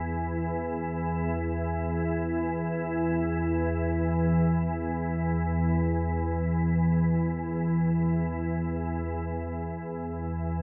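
Desolate and cavernous, this ambient excerpt in free time rests on a single organ-like drone playing alone from start to finish across 10.6 seconds, sitting up front and spanning E2 to E3. Its detuned, sine-like unison tone rises with a slow attack, sustains calmly and fades on a long release, thickened by ensemble chorus, built-in reverb and a diffuse ambient delay. A huge, wet reverb with a 7.7-second decay surrounds it, and a new section arrives at 9.1 seconds.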